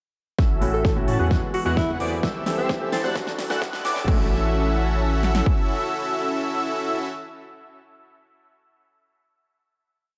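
Euphoric and uplifting, this short festival progressive house piece is a single build that arrives on a sustained final chord at 4.1 seconds, all set in a lush hall reverb. A punchy, overdriven four-on-the-floor kick and snare sit up front over a second kit of crisp hats, crash and huge snare, beneath a bright, detuned supersaw riff that a filter sweep moves across through the build, a deep saturated sine sub bass locked to the chord rhythm, and a clear grand piano playing dotted-rhythm chords; the supersaw, bass, piano and a dark, thick sawtooth lead arpeggiating an octave above the chords in the background all pump to the sidechain, and the supersaw, piano and lead carry dub echo. A mellow alto saxophone with vibrato and dub echo plays short jazz-style answering phrases until 3.1 seconds, while a very quiet riser and a faint lush pad with chorus and phaser fill in behind.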